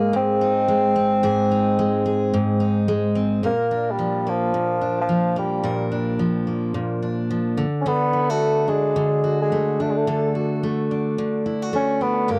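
Acoustic pop with a sunny, easy-going mood, this brief cut from a longer piece moves in a relaxed 4/4 with a gentle swing on the sixteenths. A mellow bassoon carries the melody from the opening in a classical-style solo voice, its roomy, distant tone touched by tape echo even as it sits up front. Beneath it, a picked steel-string jumbo acoustic guitar supplies a dark, full-bodied accompaniment, with audible finger squeak adding intimacy. The harmony opens on Ab, shifts to Bb at 3.4 seconds as a new section begins, and moves to D at 7.6 seconds. The sound is that of a dry, close 1970s-style studio recording in a moderate booth ambience.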